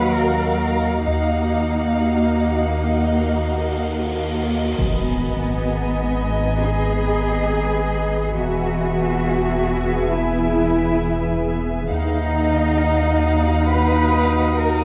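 A saturated sub bass drone sits up front from the opening, deep and thick, beneath muted, con sordino string sections in this ominous, mysterious suspense film cue at around 64-69 BPM in 4/4, cut from a longer piece. Two violin lines carry the melody and a second line, with violas, cellos and double basses bowing dark, veiled harmony, the cellos close and lush at the front while the basses sit distant in the background. An ethereal airy pad holds sustained chords behind them, detuned and mellow, with ensemble chorus and its own reverb. A huge, bright cymbal swell builds from 3.4 s into an impact at 4.8 s, where a third violin texture enters high above the others and continues to the end. The harmony moves from Ebmadd9 through Abm and E before returning to Ebmadd9 at 11.9 s, all set in a moderate scoring-stage reverb with a layer of vinyl crackle.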